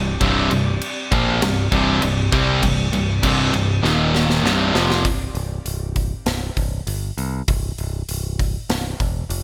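Bright 1980s-style digital production with light reverb gives this hard rock excerpt, cut from a longer piece, an aggressive, menacing edge. Up front, a searing high-gain distorted guitar drives the riff over C5 and Eb5 chords, joined by an overdriven semi-hollow guitar with a lush chorus that sits further back and adds a rounder, hollow-body tone. A punchy, direct electric bass holds down the low end, while a very quiet, airy pad with a breathy noise layer sustains soft chords high above the guitars. A big acoustic rock kit with a punchy kick, a medium-tuned snare, bright cymbals and gated reverb comes in just after the start and plays a fill from 3.8 seconds. At 5.0 seconds the guitars and pad stop, leaving bass and drums to carry the rest of the passage.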